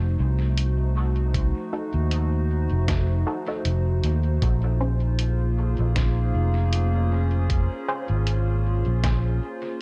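Ambient dub in Bb minor at 78 BPM with a lightly swung 16th feel, deep and meditative, this excerpt drifts from F7b9 to Bbm9 over a warbling, detuned tape-like pad with chorus and reverb. A round, punchy fingered electric bass sits up front from the start, a lo-fi sampler-style kit adds hi-hat and a fat snare soaked in dub echo from 0.6 seconds, and a muffled, thumpy electronic kick arrives at 1.3 seconds. Filtered, sawtooth-edged chord stabs with a sub octave, phaser and dub echo flicker in from 1.7 seconds, all set within a dark production whose top end is gently rolled off.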